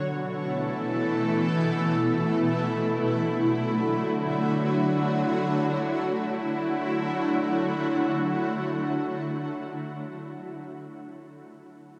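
A shimmering ambient pad opens this short dream pop excerpt, holding sustained chords in free time in D major. Its sound is detuned and warbling, with an octave-up shimmer, a granular grain and a vintage sine-based character, while slow attacks and long releases let each chord bloom and linger. Chorus and the pad's own reverb add movement, and the part sits bright and up front against a dark, warm production. The harmony rests on Esus4 before settling onto Dadd9 at 2.7 seconds, with a new section arriving at 5.9 seconds. A huge, wet ambient reverb with a very long tail surrounds the pad through to its end at 9.7 seconds, leaving an ethereal, dreamy mood.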